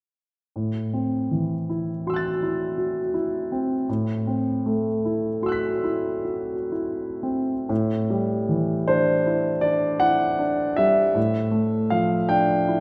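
Wistful and nocturnal, this short cut from a longer impressionist classical solo piano piece drifts in a rubato 9/8 at 38-57 BPM in A dorian, with a concert grand that sounds clear, natural and up front, with a deep bass, across a range from A2 to B6, playing from 0.6 s to 12.8 s in a wet concert-hall reverb as Am6 and Am69 harmonies give way at 7.7 s to a second section moving from Am7 to Gsus2/A.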